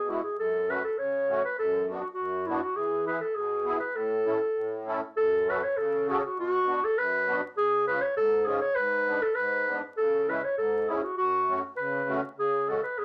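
A loose, rubato 2/4 pulse around 100 BPM carries this jolly, festive fragment of alpine folk dance-band music, cut from a longer piece. The clarinet takes the melody between E4 and C#5, sitting up front as a solo voice with a warm, classical tone that still sounds distant and roomy. Beneath it, the musette accordion supplies the accompaniment from F#2 to A4, its reedy, shimmering musette tuning giving a vintage, band-limited colour at a lower level than the clarinet. The opening passage in A major moves through F#m, Bm/F#, E and A, then at 5.2 s the music shifts to F# minor, passing through Bm, C#, G#dim and C#m before settling on a C#sus4 at 12.4 s. Moderate studio reverb and a layer of vinyl crackle frame the sound, with tuning set to A4 = 441 Hz.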